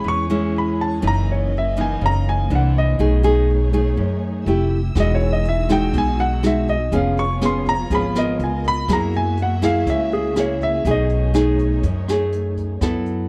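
A straight 4/4 bossa nova groove at 122 BPM carries this sophisticated, breezy passage, where an intimate concert grand piano takes the solo melody up front with audible action noise and deep bass, a bright fingerpicked nylon-string guitar and a woody pizzicato upright bass play close beside it, a muted string section holds dark, veiled con sordino chords with vibrato and a soft attack, and a distant, roomy brush drum kit with a boomy kick, hi-hat and rim click joins at 5.0 s, all set in light reverb over lush harmony moving from Amaj7 through Emaj9 to B13.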